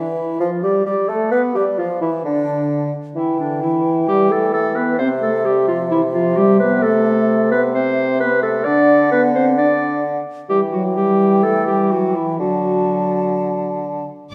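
Quick classical-period symphony orchestra movement at 130 BPM in C major, cheerful and spirited with a rubato feel, where a dark, up-front clarinet and a pure, hollow flute with vibrato carry second lines over a warm bassoon accompaniment and soft-attacked, smooth-topped sustained chords from the French horn section, all heard through the roomy bloom of a scoring stage as the harmony moves from G69/D at 3.2 seconds through C, D and Em in this brief passage.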